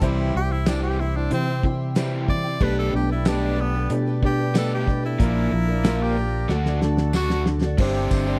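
Hopeful and nostalgic, this short excerpt cut from a longer folk rock and heartland rock piece moves at a relaxed 93 BPM in a straight 4/4, centred on G mixolydian. An edgy tenor saxophone with light vibrato takes a pop-style solo from 0.4 seconds, riding over a band that plays from the start: a fat-snared, tight-kicked 70s drum kit and a dark, round, amped fingered bass sit up front, while a double-tracked overdriven electric guitar carries the riff. Behind them, a boxy, shimmering twelve-string acoustic guitar adds octave-doubled picked accompaniment, and a jingly, band-limited tambourine joins at 0.7 seconds. A very quiet concert grand piano with audible action noise and a reedy, breathing harmonium holding sustained chords fill out the background. The harmony passes from C through Gadd9/B and Bb to D, where a drum fill at 6.5 seconds leads into a Gsus4 at 7.8 seconds. The sound is dry and close, in the manner of a 1970s studio recording with little reverb.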